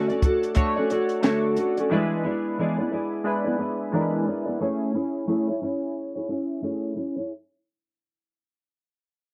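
A relaxed 89 BPM groove in 4/4 with a 60% swing on the sixteenths sets a laid-back, nostalgic mood for this short indie and bedroom pop excerpt in A major. A compact cocktail drum kit of kick, snare and hi-hat plays only from 0.1 to 1.9 s, sounding dark and smooth in a small room, with a punchy kick and a high-tuned snare up front. A fingerpicked steel-string dreadnought guitar carries the accompaniment for the full 7.3 s, full-bodied and warm, colored by analog chorus, vibrato and a low-pass filter. Glossy retro synth keys built from pulse and sawtooth waves, with pulse-width modulation, a fast attack and decaying notes, add a bright, chorused shimmer under a filter sweep until 4.6 s. The harmony moves from Dmaj7 to E7 and settles on Amaj7, all captured in a dry, close 1970s-style studio sound with light reverb.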